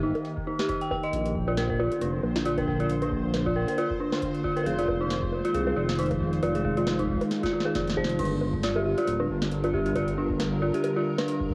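Glitchy and intricate, this IDM piece moves at 136 BPM with a light 16th-note swing: a silky, mellow string machine holds sustained chords over a rumbling, detuned saw bass, while an eerie, inharmonic FM bell sits up front with chorused, delayed arpeggios. A booming analog drum machine with crisp snare, metallic hats, bongos and crash pairs with a deep, tape-warmed electronic kick, and a very quiet, bubbling stepped-filter texture enters at 1.4 s and stops at 8.2 s. After a drum fill, the harmony moves to Gm7 at 8.2 s for a new section, all of it framed by spring reverb and the homespun character of a cassette recording.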